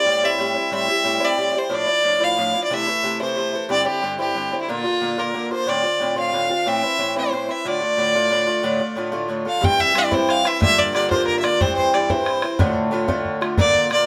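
Celtic folk slide in a lively, straight 12/8 feel, wild and dark, with a clear, smooth fiddle carrying the melody up front over metallic, double-strung picked Irish bouzouki, joined at 9.6 seconds by a boomy, open bodhran as the band plays live together in a moderately reverberant stone room.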